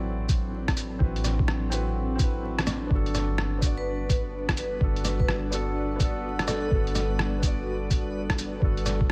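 A felt-muted upright piano with tape echo, an ethereal, detuned pad and a soft, round 808-style bass open this rainy, nocturnal future garage excerpt, all three pumping with sidechain, before a muffled, thumpy kick and an up-front lo-fi sampler kit of cabasa, hi-hat and rim click arrive at 0.3 seconds, while a bright vibraphone with medium hard mallets rings out a short melody from 3.8 to 7.2 seconds and a reversed, granular texture swells in the background over vinyl crackle.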